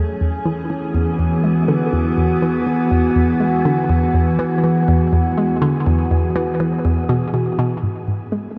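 Hypnotic and cosmic, this excerpt of sequencer-driven ambient space music moves at 122 BPM in a straight 4/4, settling on E before shifting to G#m7 at 7.8 seconds. A bouncy, detuned square-wave pluck carries a low riff through chorus, phaser and tape echo, while a morphing wavetable pad holds up-front sustained chords bathed in shimmer reverb, and a breathy, wind-like tuned noise texture sits high in the background. A filter sweep runs across the synth arpeggio sound from 0.0 to 7.8 seconds, all within a lush hall reverb and a dark production.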